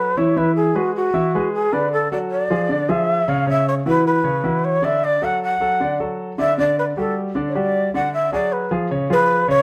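A studio sound with moderate reverb frames this short jazz excerpt, cut from a longer piece and moving at 155 BPM in a straight 4/4. A breathy, reedy shakuhachi carries the melody up front from start to finish, its end-blown bamboo tone close-miked and touched with vibrato, tongued notes and a plate reverb, ranging from F#4 to F#5. A clear grand piano accompanies throughout, intimate and present, with audible action noise and long sustain as it spans C#3 to Fb5. The harmony moves through rich extended chords, opening on Eadd9 at 0.4 s and passing through E13b9, Dmaj13/C# and G5 before reaching C#7 at 8.9 s. The mood is sophisticated and sunny.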